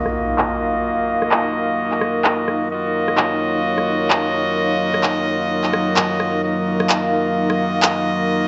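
Dulled at the top and washed in a moderate plate reverb, this swaggering, bouncy bass house excerpt with swung sixteenths opens on an electronic impact as brilliant, tight jazz-style horn stabs with light vibrato and dub echo ride a filter sweep alongside up-front, overdriven rim clicks and layered handclaps under their own sweep, while a dark, nasal, detuned analog pad holds chorused chords and a blurred granular cloud pad drifts in the background.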